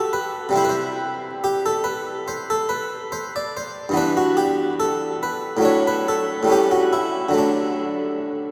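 A solo Italian-style harpsichord opens on a G chord and moves through C before settling into D major at 3.9 s. Its single set of strings sounds round, plucked and full, close and up front, set in a vast, echoing cathedral with a long reverb tail. This radiant, flowing baroque-style suite movement unfolds in a rubato 4/4 around 71 BPM, moving through Em7/G, D/A and A7 to arrive on D, and is cut from a longer piece.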